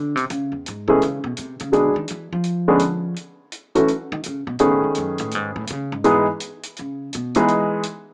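This jazz piano trio clip, cut from a longer piece, has a relaxed, swinging feel in 4/4. The upright bass takes the solo spot from the first moment, its pizzicato steel strings sounding dark and woody as it moves through a low register until 7.4 seconds. An acoustic hi-hat ticks along from 0.2 seconds with a natural, small-room character, sitting quietly in the background. The upright piano enters at 0.9 seconds, warm, polished and up front, with short sustain, carrying the melody over a progression that runs from a rootless Amaj7 to a G#m7b5 and a rootless C#, pauses briefly on an unharmonized stretch, then moves to B13 and resolves to Emaj7. A moderate club reverb surrounds the trio, and the overall sound has the compact quality of a small speaker.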